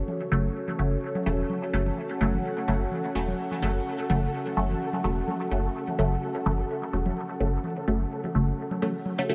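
A muted, detuned filtered chord stab with phaser, gritty 12-bit sampler character and dub echo punctuates this hypnotic, cavernous dub techno excerpt at 127 BPM in F# minor, set over a moody, mellow analog pad with chorus, a round, soft sub bass, electronic toms and congas with dub echo that sound re-recorded in a large room, and a flickering, grainy granular texture that drifts in from 3.1 s, all wrapped in light digital reverb and vinyl crackle.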